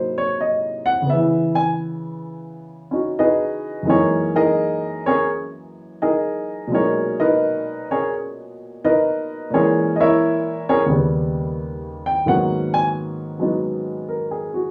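Swung eighths stretched by rubato at 86 BPM carry this moody, late-night solo jazz fragment in G# minor, where a warm, natural baby grand piano sits up front in a moderate club reverb, moving through lush extended chords such as C#m9, F#13 and Bmaj13 before settling on G#m11 near 12.3 seconds.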